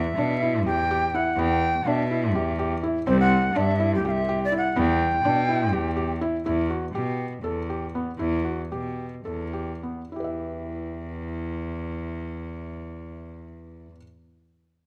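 The music moves in an uneven 7/8 meter with a straight feel, giving this contemporary chamber excerpt a hypnotic yet restless pull. A bright, airy bamboo shakuhachi carries the melody up front, its end-blown tone marked by vibrato, a crisp chiff on each attack and a reedy edge, before it falls away at 6.2 seconds. Beneath it, a single bowed cello lays down the bass with a rich gut-string sound in period style, also placed close to the listener. A felt-muted upright piano plays soft, mellow arpeggios whose thin felt and audible action noise lend an intimate, warm texture. The harmony shifts from E minor to C and back, and the pace slows between 6.5 and 10.1 seconds, leaving cello and piano to carry the closing stretch. A moderate recital hall reverb surrounds the trio, and the passage is cut from a longer piece.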